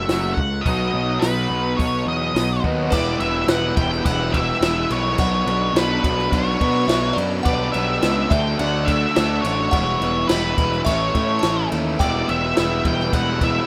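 A rough home-demo mix with light reverb carries this cool, restless indie rock excerpt, led by a dark, picked octave-fuzz lead guitar melody and a round, punchy fuzz bass up front. In the background, a compressed fuzz guitar and a lo-fi, overdriven garage guitar with lush chorus play riffs, while a very quiet, detuned sawtooth pad with a resonant filter swell holds sustained chords over a dry, compact cocktail drum kit with a high-tuned snare. At 2.9 s a delicate, tinkling FM synth bell joins with a second line.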